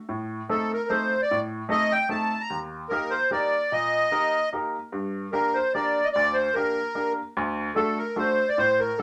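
A reedy accordion with a light tremolo tuning carries the melody in this bittersweet, whirling musette waltz, entering at 0.5 seconds with a sweet tone that sits up front in a boxy small room. Beneath it, a clear upright piano provides the accompaniment from the very start, its worn, woody voice slightly detuned, with audible action noise and long sustain lending an intimate feel. The piano sits close and present, though it plays more softly than the accordion. The waltz moves in three with a gentle swing on the eighth notes, passing through a diminished chord, then E-flat, G minor and D. A moderate studio ambience gives the pair a short, natural space, and this brief passage is cut from a longer piece.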